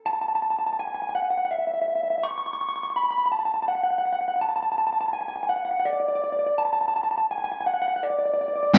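A twangy, slightly broken-up electric guitar through a small old amp carries the high melody from the start, its lo-fi tone bathed in spring reverb as this euphoric, hopeful rock passage in 3/4 builds. At 8.7 s a louder, double-tracked fuzz guitar breaks in with a low distorted riff just as the cut ends. The band plays live in one room, with a wet studio ambience around the sound.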